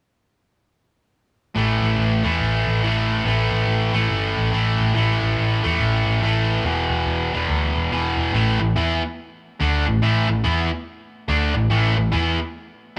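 A bright, double-tracked distorted electric guitar sits up front with a compressed, picked riff from 1.5 seconds, driving and raunchy over a swung rock groove, while a dark, round, foam-muted vintage bass pushes underneath in a small room with light digital ambience, moving from an opening section on A5 and E5 chords to a second section returning to A5 at 8.3 seconds in this cut from a longer piece.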